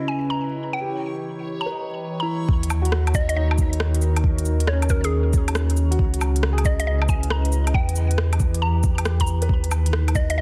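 A woody, round mallet-like synth pluck carries the melody through this wistful, nocturnal future garage excerpt at 137 BPM with a 16th-note swing, its FM tone warbling through chorus and tape echo over a detuned, lo-fi pad, a felt-muted upright piano with audible action noise, and a reversed, granular texture swelling in the background. At 2.5 seconds a deep, round sine sub bass with tube saturation arrives alongside an overdriven soft electronic kick, and an organic electronic kit of crisp hi-hat, cabasa, rim click and woodblock joins at 2.6 seconds, with sidechain pumping on the piano, pad and bass. Chords move among Dbm7, Em and Ebm, and the dense, heavily limited master carries vinyl crackle.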